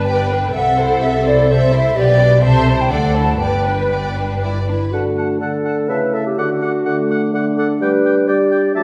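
Spirited and cheerful, this brief cut from a quick classical-period movement for symphony orchestra moves at 126 BPM in 3/4 with a flexible, rubato feel, starting in G major and shifting to D major at 4.9 seconds. At the outset a rich, focused violin section carries the melody with vibrato, joined by a second violin line sitting in the background, a lush viola section in accompaniment, and a bass foundation of close, expressive double basses and soft-attacked cellos. An airy flute section with a crisp attack plays a second line throughout, floating above the strings. As the strings fall away near 4.7 seconds, the winds take over: a solo clarinet with a soft attack, a clear oboe with light vibrato, and a mellow, up-front bassoon in accompaniment, while a dark French horn section holds sustained chords. The whole ensemble is heard from further back in a recital hall, with a reverb tail of about 1.6 seconds adding a spacious bloom.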